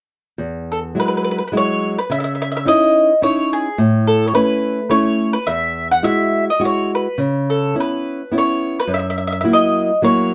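In a straight triple metre, this lively, sunny Italian folk excerpt pairs a small, dark-toned fingerpicked nylon-string guitar, which starts at 0.4 seconds and moves through Eadd9, C#madd9, A, C#m7 and F#7, with an up-front mandolin that carries the melody on woody, picked double strings, all set in a moderate studio reverb with a warm production.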